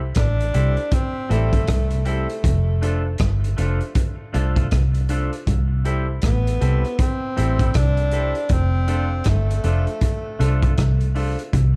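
A dark, dry production frames this sunny, uplifting roots reggae excerpt, where a round, foam-muted vintage electric bass and a gritty, saturated breakbeat kit of tight kick, hi-hat and rim click sit up front beneath a breathy tenor saxophone melody with subtone, light vibrato, scooped notes and tape echo, while a very quiet, compressed envelope-filtered guitar riff, a bright, twangy clean electric guitar accompaniment with tape echo and concert grand piano stabs in the background fill out the swung groove over C6 and F6 chords.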